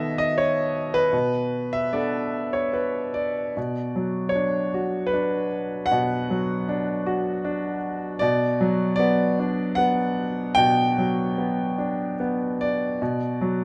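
In a flexible, rubato 3/4 at roughly 71-80 BPM, this melancholic, wistful classical excerpt in B minor features a solo concert grand piano, clear and up front with deep bass and long sustain, ranging from B2 to G5 under light reverb and close, detailed microphones, moving from B7 to Bm7 before settling on Bm at 3.6 seconds for a longer second passage that carries on to 13.6 seconds.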